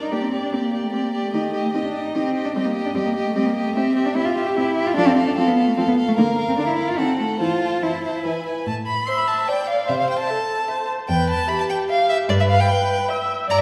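All four strings of a quartet start together in this quick classical-period movement, a dramatic, urgent passage at 148 BPM in 3/4 that settles into A minor from 3.8 s and moves into a new section at 8.7 s. The first violin carries the expressive melody up front with vibrato and portamento, the second violin adds a rich, smooth second line, and the dark viola fills in the accompaniment. Beneath them, the close, up-front cello anchors the bass, all heard from further back in a wet scoring-stage reverb in this excerpt from a longer piece.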